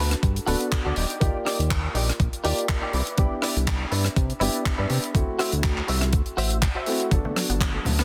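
A dry, tight funk kit of handclaps, hi-hat and rim click opens at 122 BPM in 4/4, with a light 16th-note swing, and is soon joined by a thumpy, overdriven electronic kick sitting up front in this feel-good, groovy nu-disco cut from a longer piece. A fat, sawtooth analog bass, detuned and saturated, pumps against the kick and sits up front in the mix, while a dark, worn grand piano with audible action noise comps softly underneath through sidechain pumping and tape echo. A bright, twangy clean electric guitar, recorded direct and treated with ensemble chorus and tape echo, plays a riff until 7.1 seconds. The harmony in G major moves through Gmaj9, Ebmaj7, Cmaj9 and D9 before returning to Gmaj9. At 7.1 seconds a lush, warbling unison pluck arrives with pumping arpeggios and analog delay, and soft-handed congas join in the background at 7.2 seconds. Light reverb and studio ambience frame a dense, heavily limited modern master.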